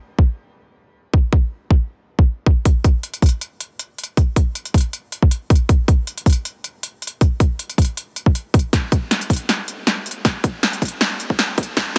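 A hard-clipped, tape-warm electronic kick drum sits up front and opens this future bass passage at 0.2 seconds, carrying a euphoric, bright mood at 158 BPM in 4/4 with a half-time feel and a light swing on the sixteenths. At 2.7 seconds a layered big-room dance drum kit joins, also placed up front, bringing a punchy snare and crisp hi-hats re-recorded in a small room. From that point the music becomes a build-up, with a filter sweep running through to the end. A drum fill starts at 8.7 seconds and drives the passage onward until this section of the longer piece is cut off. The sound is dry and dense, with a heavily limited modern master and a high-pass filter.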